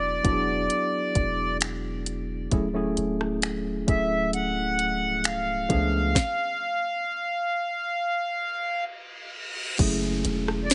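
A slow, straight 66 BPM pulse in 4/4 comes from a soft-kicked, sharp-snared R&B drum kit with finger snaps, hi-hat and rim click, entering at 0.2 seconds beneath a long, deep sine 808 bass, while a reedy, vintage accordion with slow beating and a digital delay carries the longing melody up front. A worn, slightly out-of-tune tine electric piano heard through built-in speakers supplies mellow chords moving from E9 through Dmaj9#11 to C#7b9b13 in this moody contemporary R&B excerpt. The groove stops at 6.2 seconds, a reverse cymbal and downlifter enter at 8.6 seconds, and the music lands on F#m9 at 9.8 seconds, all under light reverb.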